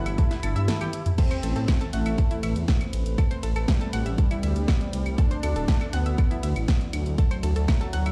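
This short excerpt of melodic techno opens with a thick, bold unison lead, a deep, moody ambient pad and a menacing detuned saw bass all sounding together, with the mood dramatic and melancholic. The pad sits in the background, dark and full-bodied with slow attack, chorus and its own reverb, while the saturated, evolving bass sits up front with a filter swell. A round analog pluck adds bright arpeggios with chorus and digital delay, and the wave-folded lead carries the melody with vibrato and its own delay. A house drum kit with a cracking snare, claves, hi-hat, ride, crash and toms plays a fill from 0.7 to 1.2 seconds. A punchy, tape-warm electronic kick arrives at 0.2 seconds and drives the track up front, with sidechain pumping on the synth parts as the harmony moves through Gadd9, Amadd9 and Dadd9. The drums carry a large-room character, and the whole plays as if through a big sound system in a bare stone room.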